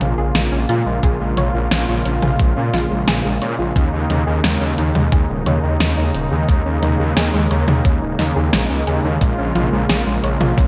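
Synthwave with a driving, nocturnal mood, this brief cut from a longer piece opens on a thick, detuned saw bass with tube saturation and chorus, a brassy analog pad holding sustained chords with sidechain pumping, and a soft, round pluck playing chorused arpeggios through cassette tape and digital delay in the background. A fat-snared pop drum kit with hi-hat, toms and gated reverb sits up front from the start, joined at 1.0 s by a thumpy electronic kick drum. The harmony moves from Bbm7 to Eb7sus4 and back, all set in a plate reverb with a bright 1980s-style digital sheen.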